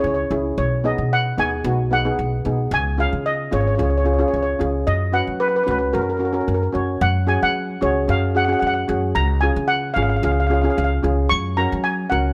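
From the first beat of this bouncy, festive calypso clip, cut from a longer piece, a shimmering, metallic lead steel pan played with medium rubber sticks carries the melody up front while cello pans fill in the chords beneath it and a woody, thumpy pizzicato upright bass drives a straight 4/4 at 112 BPM, all three close-miked in fine detail within a moderate recital hall reverb as the phrase begins again at 7.0 s.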